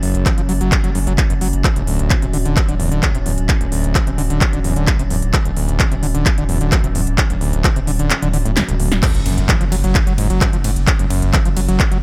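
An echo-heavy digital ambience frames this dark, relentless peak-time techno excerpt at 130 BPM, where a squelchy, resonant sawtooth acid line with distortion, chorus, analog delay and sidechain pumping snarls over a deep, saturated sine sub bass and an eerie metallic FM drone in the background, while a punchy electronic kick drives a kit of crash, ride, smooth hats, claps and snare until the kick drops out at 8.1 s and a drum fill ushers in the drop at 9.0 s, where a very quiet electronic impact lands.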